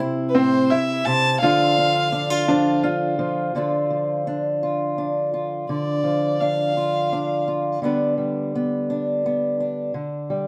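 A fingerpicked archtop guitar opens this melancholic, haunting acoustic folk excerpt in a slow 6/8 at 56 BPM in D dorian, its up-front tone carrying audible finger squeak over chords moving from Am to Dm and finally G/D. At 0.3 seconds a single dark, nasal fiddle enters with the bowed melody and light vibrato, while a bright upright piano with audible action noise plays intimate arpeggios until 3.5 seconds. The fiddle drops out at 7.5 seconds, leaving the guitar to continue in a wet studio reverb.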